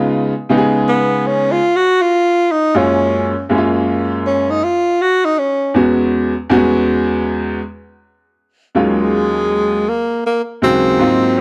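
Cool and nocturnal, this short instrumental hip hop passage, taken from a longer piece, moves with a swung sixteenth-note feel. A clear, woody upright piano opens the track alone as accompaniment, its open tone and long sustain sitting up front across a low-to-middle range. At 0.9 seconds a breathy tenor saxophone enters with the melody, playing a jazz-style solo full of subtone, scooped notes and vibrato, set in a plate reverb and placed as close as the piano. The harmony drifts through rich extended chords (Db9, Gbmaj9 and E6) before settling onto Ebm11 as a new section begins at 8.8 seconds. A moderate studio reverb gives the pair a modest sense of room, keeping the late-night mood intimate.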